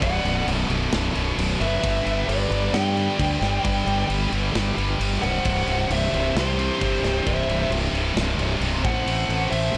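A growly, fuzz-drenched fingered bass sits up front in this epic, aggressive heavy metal excerpt, its punchy overdriven tone anchoring a half-time groove in 4/4. Above it, a dark, bluesy lead guitar carries the melody with distortion and a digital delay, while a second high-gain lead traces a supporting line further back in the mix. Two picked rhythm guitars drive the riff, one bright and biting, the other scooped and tucked into the background. A tight acoustic drum kit with bright cymbals, a medium-tuned snare and softly clipped kick and snare keeps the pulse, and a very quiet, distant chamber string section floats bowed, soft-attack chords beneath the noise. The harmony moves from Bm through G and C to Am, and the whole recording has a blown-out, overdriven small-room sound throughout its 9.8 seconds.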